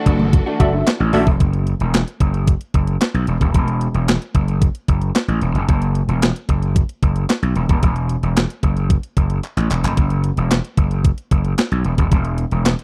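Dry and close in a 1970s studio manner, this cut from a longer early-eighties boogie funk piece moves at 112 BPM with a late-night, danceable feel. The growly, overdriven slap bass and the thumpy, up-front 12-bit drum machine with handclaps, hi-hat, kick and snare carry the groove from just after the start to the end. For the opening 1.4 seconds, a bowed string section with vibrato holds sustained chords over E9sus4, a lo-fi, slightly broken-up guitar riff with analog chorus sits in the background, soft-handed, high-tuned congas play very quietly, and a nasal, detuned polysynth comp with a filter pluck joins in. After that, only the bass and drums remain, with Esus2 harmony and a drum fill at 9.4 seconds.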